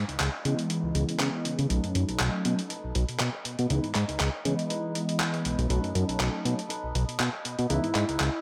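Nostalgic and funky, this short filtered disco house clip at 120 BPM in C# minor rides a gritty, compressed sampler-style drum kit with handclaps and hi-hat, a fat, saturated analog bass up front, mellow chorused synth brass, a twangy guitar riff and bowed violin chords in the background, a very quiet downlifter at the start, and a distant horn section entering at 7.7 seconds, all under a filter sweep across C#m9 and B7 chords.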